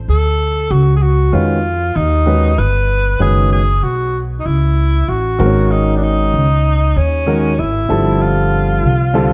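The upright bass starts things off at the very beginning, plucked and woody with a thumpy, gut-string tone, and a breathy tenor saxophone enters almost at once to carry the melody in this mellow, nocturnal jazz-hop piece at 96 BPM with a lazy swung sixteenth feel. The saxophone plays in a whispered, intimate subtone with soft attacks, vibrato and scooped notes, carrying a slapback echo and a distant, roomy quality. At 1.3 seconds a dark baby grand piano comes in with smooth, vintage-sounding accompaniment and long sustain. The harmony drifts through suspended ninth chords, moving from Db9sus4 to Gb9sus4, Ab9sus4 and G9sus4. A small room ambience and a dark, warm production with vinyl crackle wrap the short fragment in a late-night haze.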